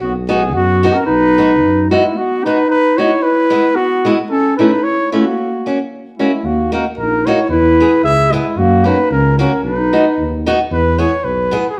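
Bouncy and festive, this alpine folk excerpt moves in a straight 2/4 at 112 BPM in B major, cut from a longer piece. A mellow, close-miked trumpet carries the melody up front in a classical style, while a dark clarinet plays a second line beneath it, stopping at 10.4 seconds. A picked old ladder-braced acoustic guitar, woody and boxy with old strings, enters at 0.3 seconds and provides accompaniment up front. A mellow tuba with light vibrato and a punchy, smooth top supplies the bass, dropping out after 2.0 seconds and returning at 6.4 seconds. The harmony travels from B through E, A/E, F#, D#m and back around to B before landing on E near the end. The band plays live in one room, with a moderate large studio reverb giving the sound a natural space.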